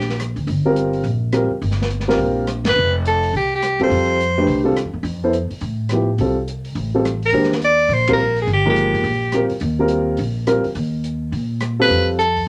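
Searching and open, this modal jazz cut from a longer piece swings briskly at 210 BPM in Eb major, drifting between Ebadd9 and Fadd9 chords. A clear, breathy soprano saxophone with vibrato sits up front, playing short melodic phrases, while a woody, thumpy pizzicato upright bass on gut strings and a soft drum kit with dusky cymbals, a boomy kick, rim clicks and a rolled-off top keep time underneath. A dark, mellow baby grand piano enters at 0.7 seconds with natural accompaniment, the band hits accents together at 2.6 and 8.0 seconds, and a moderate studio reverb gives the whole a small-room glow.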